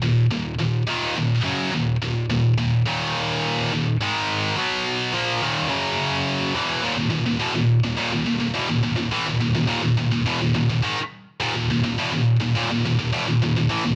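Heavy and epic, this metal excerpt features a single high-gain electric guitar, distorted, bright and double-tracked, playing alone up front at 105 BPM in Eb phrygian. The first 6.8 seconds move in half time from an Ebm chord through a run of power chords on Ab, B, Eb, Gb and E, before a second section begins at 6.8 seconds on Eb. Moderate studio reverb frames the dark production.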